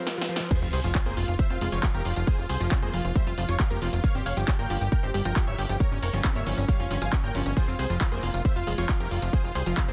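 A huge, thick supersaw lead carries the melody from 0.5 seconds in this euphoric, bittersweet uplifting trance excerpt at 136 BPM in F harmonic minor, its detuned unison sawtooth layers sustained and compressed with a sub octave beneath, pumping with sidechain and trailed by dub echo. A brief break opens the clip as a riser and sub drop sit in the background and a drum fill from a punchy analog drum machine leads into the drop. The drop lands at 0.5 seconds with an impact, an up-front layered electronic kick and a funky, plucky bass of sawtooth and square waves with ring modulation, its fast filter pluck decaying and pumping. The drum machine adds crash cymbal, handclaps, hi-hat, tambourine and a punchy, tape-toned snare with a short small-room sound, its hats, cymbals and percussion pumping and high-passed. In the background, a round, bright analog pluck spins arpeggios through chorus, phaser, cassette tape colour and dub echo while the harmony moves from Fm to Gm7b5 and back to Fm. 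The mix is dry, dense and heavily limited in a modern style.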